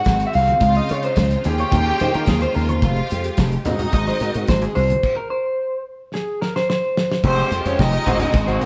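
Recorded live in a stone room with moderate reverb, this sultry, glamorous disco cut at 109 BPM in F minor rides a growly, envelope-filtered slap bass and a dry, dark 70s drum kit with a fat snare and tight kick. A slightly broken-up, lo-fi electric guitar with spring reverb plays accompaniment while a clean electric guitar solo unfolds over a lush, vibrato-rich violin section and clear, focused sustained strings. Very quiet low-tuned congas and a jingly tambourine sit in the background until the band hits a stop at 5.0 seconds, and a drum fill at 6.1 seconds leads into the next section.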